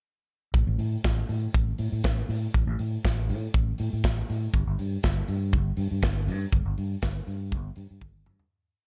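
Driving and sultry, this short disco piece at 121 BPM strips down to a breakdown of a fingered electric bass, growly and amped, bouncing a sliding octave line between G1 and A2, under an airy, polished studio drum kit with a punchy kick, medium-tuned snare and gated reverb playing a four-on-the-floor beat with open hats on the off-beats, both parts up front in a dry mix that fades out from 6.5 seconds before a closing drum fill at 8.0 seconds.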